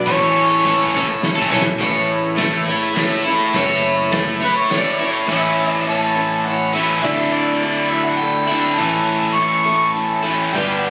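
A mellow, distant harmonica with tape echo opens this jangly, nostalgic folk-rock and heartland-rock fragment in 3/4, over a boxy parlour acoustic guitar, punchy fingered bass and a very quiet, reedy bowed chamber string section, as a bright, scooped, double-tracked overdriven electric guitar riff sits up front and a loose small-room drum kit with a fat snare plays a fill; the harmonica returns at 4.4 s, the drums stop at 4.8 s and the strings at 5.3 s, leaving the melody to ride over A, Dsus2 and A chords in a phone-recorded room with club reverb and compression.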